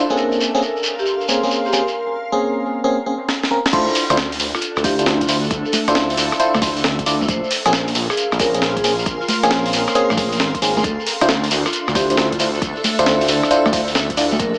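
A glassy, bell-like FM electric piano plays up-front stabs through chorus, phaser and analog delay in this skippy, moody two-step UK garage excerpt in D minor at 135 BPM, swung on the sixteenths over Bbm9 and Dm9 chords. A cloudy granular pad with sidechain pumping, a grainy shekere and a ringing vibraphone melody in the background open the piece together. At 3.3 seconds a gritty, pitched-up breakbeat kit with a high-tuned snare, congas and crash enters with a drum fill that leads into the drop at 3.7 seconds. There a punchy electronic kick and a deep, rumbling detuned saw bass arrive, all under an echo-heavy mix with plate reverb and a small speaker sound.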